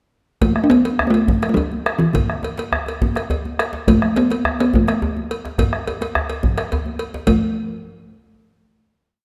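A 12/8 groove in a straight feel drives this short, complete piece of traditional West African drum ensemble music, earthy and powerful in mood. The whole ensemble plays together from 0.4 s to 7.4 s. Up front, a resonant talking drum carries the melody between D3 and D4 in short call phrases built on a motif, while a dark bombo, also up front and set in a small room, anchors the low end with an evenly spread pattern. A warm djembe plays its own evenly spread pattern, ringing, high-tuned congas played with soft hands sit in the background with an evenly spread pattern as well, and a metallic cowbell marks a bell pattern. The close, dry drums are set within a recital hall reverb, and a final note rings out from 7.3 s to 8.9 s.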